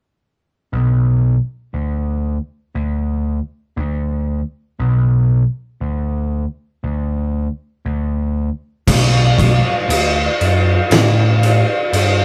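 An overdriven, growly picked electric bass opens this sludgy, ominous stoner and doom metal fragment in B minor at a crawling 59 BPM, playing alone and up front from 0.7 seconds until an oversized, low-tuned drum kit crashes in at 8.9 seconds with a boomy kick, fat snare and dark cymbals ringing in a bright stone room, all captured as a rough rehearsal-room recording with light reverb.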